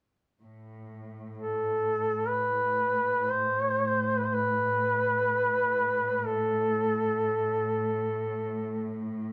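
Close, detailed microphones and a light reverb give this short passage of Caucasian folk lament an intimate yet airy sound. A rich studio cello section opens at 0.4 seconds, sustaining a low, bowed drone on A2 with a focused, lush ensemble tone, smooth on top and colored by vibrato. At 1.4 seconds a mellow solo duduk enters up front, carrying the melody between A4 and C5 in a folk style with vibrato and scooped notes, its roomy sound hinting at some distance. The cellos sit well beneath the duduk. The mood is solemn and full of longing, and the piece is cut from a longer work, with the duduk ending at 9.0 seconds just before the drone stops.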